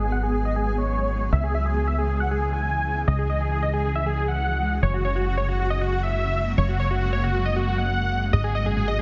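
Trance at 137 BPM in 4/4, emotional and euphoric, this nine-second cut from a longer piece moves through G#m7, C#m and F#add9 before returning to G#m7. A huge, thick supersaw carries the melody up front with vibrato, delay and a filter sweep running across the whole passage, over a punchy, funky analog bass and a shimmering, ethereal pad whose slow-attack chords evolve under chorus and built-in reverb. At 8.3 seconds a lush unison pluck slips in behind with arpeggios, all within a dense, heavily limited modern master with light reverb.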